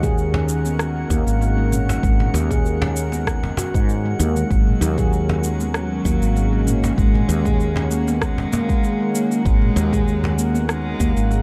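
Mystical and meditative, this organic downtempo excerpt moves at 97 BPM with a gentle sixteenth-note swing, built over a G#7 chord as a handpan rings out mellow arpeggios through delay above a growly, punchy fretless electric bass with tube saturation and a sawtooth, string-like drone that pumps in the background. A deep, tape-warm electronic kick and an afro-pop kit of rim click, shaker and toms share the groove with a woody acoustic cajon, while a glassy texture of drifting sine overtones hovers high with chorus and reverb. At 4.5 s a dark, close-miked bowed cello enters with vibrato and delay, all set in a dark production with light reverb.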